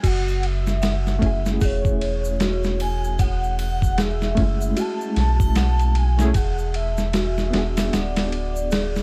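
This hypnotic, cinematic trip hop excerpt opens with vinyl crackle, a dusty, sampler-style drum kit, bass, percussion, lead and bell all sounding together from the start. The gritty, compressed kit has a thumpy kick, a medium-tuned snare, hi-hat, ride and crash, all overdriven and sitting up front with a lazy swing. A round, deep analog bass, also up front, adds tube saturation and a filter sweep, while an egg shaker and triangle stay in the background. Above them, a pure, breathy sine lead carries the melody with vibrato, phaser, ensemble chorus and tape echo, and an eerie, inharmonic FM bell plays mellow, decaying arpeggios through chorus and echo. At 1.2 seconds a reedy, bright electric piano joins with a lightly overdriven accompaniment and fast tremolo, heard through its built-in speakers. The harmony moves from F#m7 to E7 at 6.4 seconds, in a dry, close sound with little reverb.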